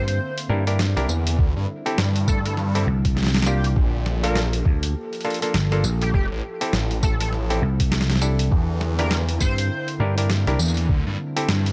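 Playful and swaggering, this glitch hop excerpt swings on gritty, pitched-down sampler drums with a thumpy kick and medium-tuned snare, hi-hat and tambourine, while a growly, punchy slap bass and a swirling, thick phased saw bass sit up front beneath mellow, stringy clav stabs through a combo amp, an edgy, tearing sync lead with chorus and delay, and a dark, warbling, nostalgic pad pumping quietly in the background.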